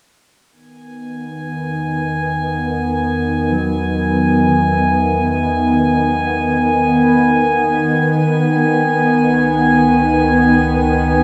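Dark, wet cathedral reverb surrounds this serene ambient excerpt in E major, which drifts in free time over an Emaj7 that gives way to C#5 at 8.0 seconds. An up-front, string-like bowed drone with tense vibrato enters at 1.0 second, joined by a glassy, chorused texture of drifting sine overtones with shimmer, while a deep, ominous, wave-folded bass drone rumbles low in the mix. From 3.5 seconds, a warm, ringing, thumb-plucked concert harp adds tape-echoed arpeggios in the background, fading in alongside the drone.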